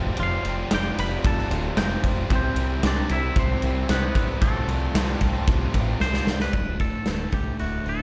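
Anthemic and cathartic, this short cut from a longer quiet-loud alternative rock piece drives along at 113 BPM in a straight 4/4, sounding like a live gig heard through a venue's PA with club reverb. A huge arena drum kit sits up front with a punchy kick, a medium-tuned snare, hi-hat, ride and crash, and a fill between 6.0 and 6.5 seconds. Beneath it, a growling fingered bass with overdrive rounds out the low end, while a sludgy overdriven guitar and a thick, fuzzy second guitar play riffs in the background, both touched with slapback echo. A twangy, clean lead guitar carries the melody with slapback echo and analog delay, and a very quiet, reedy tonewheel organ holds sustained chords through a slow rotary speaker, with key click and vibrato, until 6.5 seconds. At that point the harmony moves from Fadd9, C and Fadd9/C to Dsus2, the fuzz guitar drops out, and a slightly broken-up guitar through a small old amp takes up picked arpeggios.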